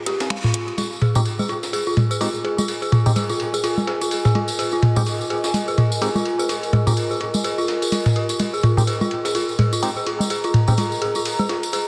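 Minimal techno with a hypnotic, sparse mood, this excerpt from a longer piece runs in 4/4 with a swung sixteenth-note feel over a single Fm7 harmony that arrives at 0.8 seconds. A dark, detuned synth bell carries the riff throughout, its eerie, inharmonic FM tone striking quickly and decaying into a long release, shaded by chorus, a low-pass filter and delay. A gritty, pitched-up sampler-style breakbeat kit of ride cymbal and medium-tuned snare, filtered and re-recorded in a small room, runs from the very start. Up-front electronic congas and toms with an analog, tape-warm character drive the percussion from 0.3 seconds, joined by a jingly acoustic tambourine in a live room from 0.8 seconds. A garage kit of finger snaps and metallic hats sounds only briefly at the start, with a band accent at 0.3 seconds. A warbling, nostalgic lo-fi pad built from detuned square and triangle waves swells in slowly from 1.9 seconds with chorus and its own reverb, while a hollow, nasal, wave-folded organ stab sits mellow in the background with chorus and delay. 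The whole mix sits in a lush digital hall ambience and a dense, heavily limited modern master.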